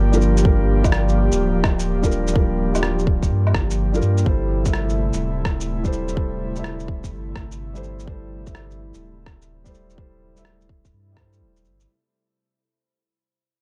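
A felt-muted upright piano with audible action noise, vintage 12-bit grit and analog delay, an airy, breathy, detuned pad with chorus, and a round sine sub bass open this rainy, melancholic future garage fragment at 126 BPM with swung 16ths, all three pumping around a tight, up-front electronic kick that arrives at 0.5 s over muffled, pitched-down shaker, woodblock and rim clicks re-recorded in a small room, while the dark, dry mix moves from Gm7 to Am at 4.3 s and fades out throughout.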